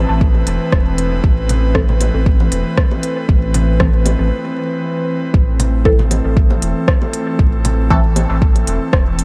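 Soaked in vinyl crackle, this meditative, nocturnal dub techno excerpt at 117 BPM in A minor rests on an up-front deep kick and a round, dark analog bass with tube saturation and sidechain pumping, beneath a breathy chorused pad, while smooth hats and rim clicks with dub echo, background congas and bongos, a muted, detuned chord stab that enters at 1.7 s under a filter sweep, and an eerie, warbling metallic drone in the distance fill the space around a brief break from 4.3 to 5.3 s.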